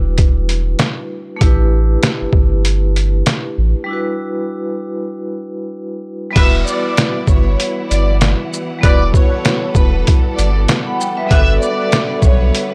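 Ringing, metallic vibraphone struck with hard mallets and run through cassette tape, over a round, deep sine sub bass, opens this moody, tough boom-bap hip-hop excerpt in E minor at 97 BPM with a swung 16th feel. It is joined almost at once by a compressed, pitched-down, overdriven sampler-style drum kit with a thumpy kick, medium-tuned snare, hi-hat, shaker and crash up front. After a break from 3.9 seconds, a pure, floating sul tasto violin melody with analog delay enters just before the second section at 6.4 seconds. It is joined there by lush, intense bowed string chords and by tight, vintage jazz-style horn stabs with analog delay sitting in the background, all captured as a dry, gritty hardware recording in a small room.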